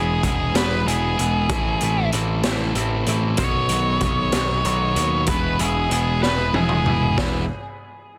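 Rolling in a slow 6/8 at 63 dotted-quarter beats per minute, this short indie rock excerpt in E major has a wistful, jangly mood, moving through E, Am, B and back to E. A dark octave-fuzz lead guitar carries the melody as a solo from the start until 7.2 seconds, its distorted tone trailed by analog delay. Beneath it, a crunchy overdriven guitar picks out a riff, while a clean, twangy electric guitar, fingered and compressed with subtle chorus and analog delay, sits in the background. An overdriven picked bass growls up front with a bright, amped edge. The raw garage drum kit enters at 0.2 seconds with a high-tuned snare, boomy kick, toms and hi-hat, gritty and saturated in a small room, and plays a fill from 6.2 to 7.2 seconds. The sound is dry and dense, with a heavily limited modern master.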